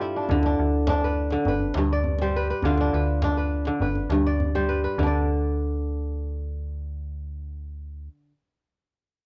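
West African traditional string and xylophone music in a flowing, hypnotic mood, cut from a longer piece, where a crisp, ringing fingerpicked kora with a cassette-tape tint opens on a fill and carries up-front arpeggios, a metallic FM bass with a fast attack and decaying notes sits alongside it, and a deep, very quiet djembe with a live-room sound drops out at 5.3 seconds, all within light reverb and a homemade cassette sound.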